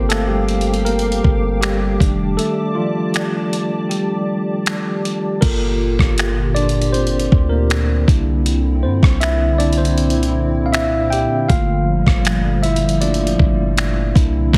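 A clean, up-front tine electric piano solos throughout this sensual, moody contemporary R&B excerpt at 79 BPM in G dorian, over a hollow, flute-like pad with ensemble chorus, a deep, boomy 808-style bass and a gritty, sampler-style drum kit with a thumpy kick, finger snaps and rim clicks, with a break from 2.4 to 5.4 seconds and light reverb on a heavily compressed, radio-like sound.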